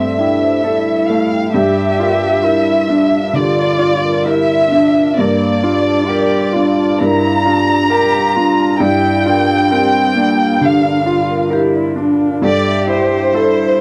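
From the first moment, a muted chamber violin section, a single muted cello, a bright baby grand piano and a vibraphone sound together in this melancholic, reflective neoclassical piece, cut from a longer work and played in a rubato 4/4. The violins carry the melody up front with a veiled, con sordino tone, vibrato and a soft attack, while the cello's dark, bowed second line sits beneath them with a smooth top. The piano's accompaniment is brilliant and natural, ringing with long sustain close to the listener. Further back, the vibraphone adds metallic arpeggios struck with medium mallets, shimmering with a slow motor vibrato and a tape echo before it falls away at 13.5 seconds, just ahead of the others at 13.8 seconds. The recording has the dry, close feel of a 1970s studio, touched by light reverb.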